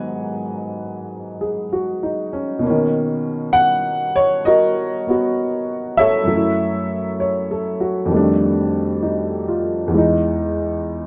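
A woody, slightly detuned upright piano opens this cool, swinging solo jazz fragment at 66 BPM in 4/4 with swung eighths, sitting smooth and up front in light reverb as it moves from G#m7 to Bmaj9 at 2.6 seconds and on through F#m7, F13 and Emaj7 across a range from E2 to G#5, played live in one room.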